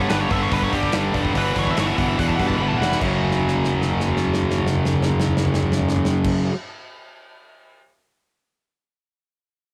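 Epic and aggressive, this short heavy metal cut opens with a nasal, parked-wah lead guitar soloing over two bright picked riff guitars, one overdriven up front and one tighter and distorted behind it, while a growly fuzz-fingered bass and an acoustic drum kit with a punchy kick in a pumping studio room drive on, with drum fills at 2.6 and 3.2 seconds as the chords move from G5 through Em/G to F#5, all captured dry on a home cassette recording.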